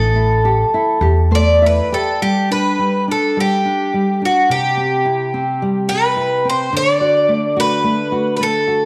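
In a loose rubato 4/4, this mournful, longing fado-style ballad fragment puts a bright, shimmering, octave-doubled picked twelve-string acoustic guitar melody up front over a dark, full-bodied fingerpicked nylon-string guitar that adds a fill from 1.0 to 2.2 seconds, while a woody pizzicato upright bass plays only until 1.8 seconds, all moving through G, C and D under a wet echo chamber reverb.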